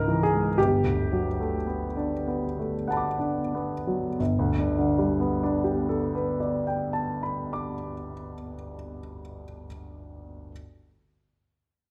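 Classical impressionist solo piano in a dreamy, hazy 3/4 with rubato, this short excerpt features an intimate, up-front concert grand with deep bass and audible action noise that slows over its opening 4.2 seconds before the music moves into a new section, all bathed in the lush reverb of a recital hall.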